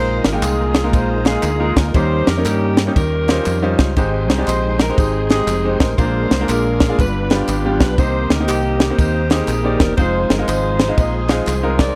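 Uptempo gospel at 120 BPM with a swung 4/4 feel, this jubilant, uplifting 12-second passage from a longer piece moves through Bb7sus4, Eb7 and Abmaj7 toward Cm7 and Fm7. A tight saxophone section carries the melody with clear vibrato, over brilliant baby grand piano, a round, punchy fingered electric bass, and a very quiet, lightly overdriven tonewheel organ holding chords through a slow rotary speaker with key click. Crisp drums sit up front with a high-tuned snare, punchy kick and ride cymbal, joined at 0.3 seconds by soft tambourine, maracas and group handclaps, all in a dry, close 1970s-style studio sound with light reverb.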